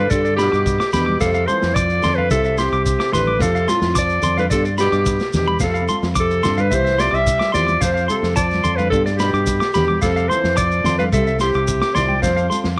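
A straight 4/4 groove at 109 BPM drives this carefree, sunny highlife guitar band fragment, with a vintage drum kit's punchy kick and medium-tuned snare, a grainy shekere, and high-tuned congas struck with hard hands that join at 0.9 s, all over a dark, round fingered electric bass cycling through G, F and C. Up front, a clear, forceful clarinet carries the jazz-style melody with light vibrato, while a breathy tenor saxophone adds a whispered, subtone second line with scooped notes further back. A twangy, bright clean electric guitar picks high arpeggios through tape echo, a fingerpicked nylon-string guitar supplies warm accompaniment in the background, and an echo chamber reverb wraps the band in a vintage glow.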